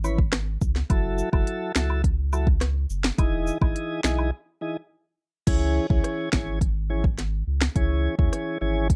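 Sultry and tough, this dancehall excerpt moves at 105 BPM in a straight 4/4, set in C# minor with a dark, warm production and little reverb. An electronic afro-pop drum kit sits up front, its deep kick and sharp snare joined by smooth hi-hats, rim clicks, finger snaps and a crash cymbal. A round, sine-like sub bass holds sustained low notes with a fast attack, while a clean tonewheel organ plays the chords through a slow rotary speaker, also placed up front. Cabasa and woodblock add a close, acoustic layer of tube shaker and group handclap until a break at 4.3 seconds. The harmony moves through C#m7, F#m7 and Emaj7, then settles on C#m as a new section begins at 5.5 seconds.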